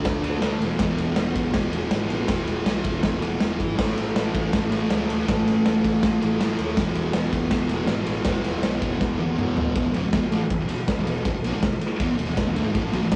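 Rowdy and swaggering, this garage rock excerpt in E mixolydian charges along at 161 BPM in a straight 4/4, with a thick, double-tracked fuzz guitar riff up front over a growly, bright fingered electric bass sitting in the background and a punchy, gritty drum kit with a medium-tuned snare and crash, ride and toms, whose fill at 9.0 seconds leads into a new section at 9.8 seconds, all soaked in a wet small room and the saturated, rough sound of a cassette rehearsal-room recording.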